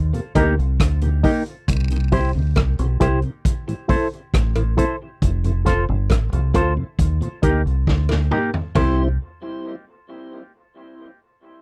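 Roots reggae at a laid-back, sunny 68 BPM in C major, cut from a longer piece, where a deep, round fingered electric bass sits up front beside a punchy vintage drum kit with dark cymbals, a mellow tonewheel organ turns through a slow rotary speaker and dub echo, a barky, lightly overdriven reed electric piano adds stabs with fast tremolo, a bright, twangy envelope-filtered guitar drifts with warbly pitch and dub echo, and cowbell and jawbone-type rattle tick along in the background, all captured in a dry, close 1970s-style studio sound, with a drum fill from 7.9 to 8.8 seconds leading back to the C chord.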